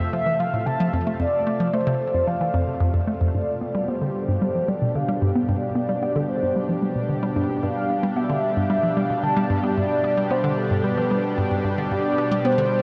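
Ambient, sequencer-driven space music with a luminous, expansive mood, where a bouncy, hollow square-wave pluck riff with phaser and cassette-tape grit sits alongside a thick, warbling unison pad of detuned vintage sawtooth chords and a mellow, horn-like lead melody with vibrato and shimmer reverb, all bathed in a huge wet ambient space as the harmony shifts from Fmaj7 to G at 3.3 seconds in this short cut from a longer piece.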